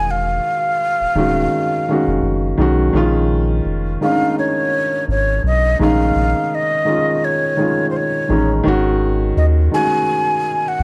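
A breathy silver concert flute carries a melancholic, nostalgic melody over felt-muted upright piano chords and a deep, round dub sub bass in this slow, swung hip hop excerpt at 84 BPM in Bb minor, the flute's unsteady vibrato and the piano's intimate, muted tone both bathed in plate reverb, with the piano and the whole mix coloured by worn, warbling cassette tape, as the harmony moves from Ebm9 to Bbm7 at 2.9 seconds and lands on Ab5 at 8.6 seconds.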